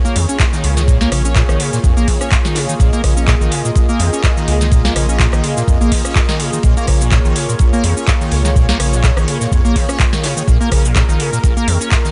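A sustained, detuned sawtooth pad with chorus and sidechain pumping opens this trippy, gritty acid house excerpt, alongside a squelchy, resonant square-wave acid riff with a filter sweep, subtle chorus and dub echo, while a barely audible electronic impact flickers at the start. A booming, overdriven analog drum machine adds a crisp snare, metallic hats, handclaps, cabasa and rim click, joined by a round, nasal background bass with sidechain pumping, a very quiet big-room rock kit with bright cymbals, and a deep, overdriven electronic kick that enters at 0.4 seconds. The swung groove rests on a single chord, and the dry mix is rolled off in the highs.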